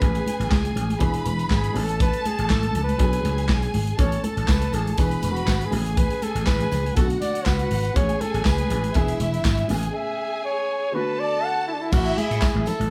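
A light reverb gives the sound of a band playing live together in one room in this joyful, danceable disco excerpt, moving at 121 BPM in straight 4/4 in A major. A close-miked flugelhorn carries the melody as a pop-style solo, its tone warm and full of vibrato. A dark, lush symphonic string section plays a second line with expressive portamento and a smooth top. An intimate baby grand piano accompanies with audible action noise and short sustain, and a growly, amped vintage slap bass sits underneath. The up-front studio drum kit brings bright cymbals, a punchy kick, a medium-tuned snare, hi-hat and handclaps, with damped congas in the background and a faint, jingly tambourine joining from a distance at 4.0 s. The chords cycle through Amaj9, E7, Aadd9 and Bm7, and a break at 9.9 s leads to a closing A5 at 11.9 s.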